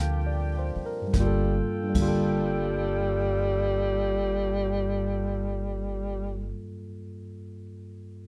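A growling tenor saxophone carries the melody from 1.2 seconds, its dark, breathy subtone tinged with rasp, vibrato and scooped notes, sitting up front on a single low G. Beneath it, a barky electric piano heard through a combo amp lays down the accompaniment, joined by a woody, thumpy pizzicato upright bass. A mellow, vintage-toned saxophone section holds soft sustained chords over a Gm9 harmony until about 5.7 seconds. A brushed jazz drum kit with dark cymbals and a boomy kick appears only briefly, from 1.1 to 2.2 seconds, just as the slowing opening gives way to the next section. Closely miked with little reverb, this short, smoky ballad fragment in a swung 4/4 feels intimate and detailed.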